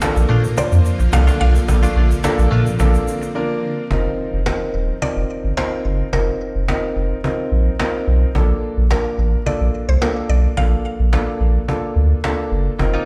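Carefree and euphoric, this dance-pop excerpt moves at 108 BPM in Bb major. A round, woody synth pluck with chorus and delay carries the melody over intimate grand piano with audible action noise, a hard-handed vintage cajon, a deep, up-front sub bass, and a twangy, direct-recorded clean guitar riff with analog chorus. A shimmering, ethereal pad and grainy tube shaker color the opening until a short break at 3.4 seconds, after which the piano, cajon, bass and pluck drive on through a dry mix that rings with a stone room's reverb.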